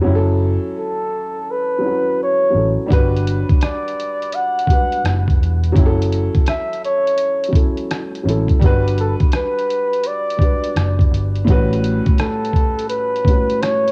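A dark, woody upright piano with cassette-tape colour and a round, foam-muted electric bass open this dreamy, cosy lo-fi hip hop fragment at 84 BPM in swung 4/4, moving through F#m7 and Gmaj7 toward A13, before a mellow, jazz-style flugelhorn with vibrato and analog delay takes the up-front solo at 0.8 seconds, and a muffled, pitched-down sampler kit of hi-hat, thumpy kick and rim click with 12-bit grit joins at 2.9 seconds, all within a small-room home-cassette ambience as the bass drops out at 12.0 seconds.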